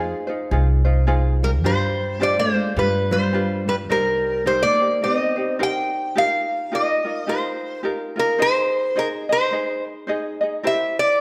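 A lightly swung 4/4 lilt carries this relaxed, languid Hawaiian excerpt, where a light fingerpicked ukulele and a woody, dark pizzicato upright bass up front open together before a bright, metallic, nasal lap resonator guitar enters at 1.4 seconds with a fingerpicked slide melody, joined by a warm second line on fingerpicked steel-string acoustic guitar, the bass dropping out at 4.6 seconds and the acoustic guitar at 5.6 seconds, all in a moderate recital hall reverb.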